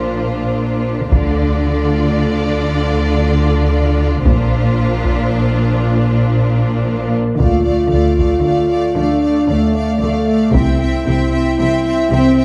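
An epic, dramatic cinematic orchestral cue in 3/4, cut from a longer piece, where a lush violin section with expressive vibrato carries the melody over a second violin line, a distant viola section, focused cellos and up-front double basses, while a band-limited taiko ensemble played with heavy sticks sits in the background from 1.1 seconds, and a dark, roomy French horn section enters with sustained chords at 6.9 seconds, shortly before the build-up gives way to the next section, all in a wet recital-hall space.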